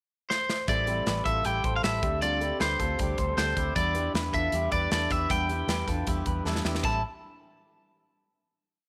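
A brisk indie backbeat at 156 BPM in straight 4/4 drives this short, complete piece of jangly indie pop in A minor, with a bittersweet, wistful mood. The modern studio drum kit sits up front, airy and polished with a punchy kick and medium-tuned snare, and opens with a fill in the pickup bar at 0.3 seconds. A twangy, lightly driven lead guitar enters at the same moment, carrying a motif-based melody coloured by slapback echo. From 0.7 seconds a vintage muted fingered electric bass adds a dark, round, foam-muted eighth-note line, and a picked steel-string acoustic guitar lays down full-bodied folk strumming in barre chord shapes. Alongside them, an electric guitar through a small old amp rings out a lo-fi figure doubled in thirds, bathed in spring reverb. The verse moves through Am7, D7sus4 and Em7 before a second drum fill leads to a closing Am7 at 6.8 seconds, with light reverb and small room ambience keeping the sound intimate.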